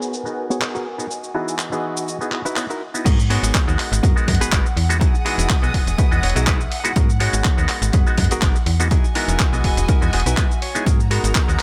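A swung groove at 123 BPM drives this sensual, funky filtered disco house passage in G# minor, cut from a longer piece and moving between G#m9 and Emaj9. It opens with a filter sweep over a nasal, hollow clav through a combo amp with phaser, a rich bowed violin section holding close chords, a twangy direct-recorded clean guitar riff, and a gritty, tape-warm sampler-style kit of handclaps, hi-hat, shaker and crash in a large room. At 3.1 seconds the drop lands as a punchy analog kick, up front, and a snappy FM slap bass with a metallic attack enter together. Sidechain pumping breathes through the clav, violins, guitar, bass and the kit's percussion, hats and cymbals, while low-pass filtering shades those same parts. The bright, picked guitar adds short fills at 6.0 and 9.9 seconds, and the mix stays dry with little reverb.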